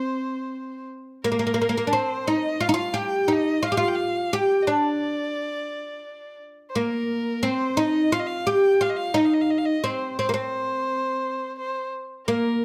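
In a straight 4/4 at 87 BPM, this longing, soulful Arabic maqam ensemble excerpt puts a woody, fretless oud up front, plectrum-plucked on its double strings to carry the melody, while a single bowed violin with vibrato, a focused tone and a smooth top traces a quieter, higher second line, all caught by close, detailed microphones in light reverb.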